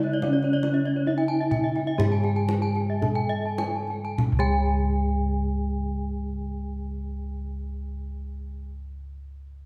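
Soft, round bossed gongs sit up front in this Balinese gamelan excerpt, their mellow, beating bronze tones struck with padded beaters carrying the bass beneath a brilliant, shimmering ensemble. Above them, a bronze metallophone played with padded disc mallets carries the melody in a gentle, ringing voice, its paired tuning producing shimmering beats with a vintage, band-limited colour. A lower metallophone struck with a horn mallet supplies a bright, metallic accompaniment. Two higher metallophones spin arpeggios, also struck with horn mallets and tuned in pairs: one airy, the other close-miked, dry and full. A tight kendang, played with hard hands and heard from a distance in a large room, drives the opening as the music slows through its first 4.2 seconds, then falls away at 4.8 seconds as a second section unfolds. A moderate recital-hall reverb lets the bronze resonances linger and blend.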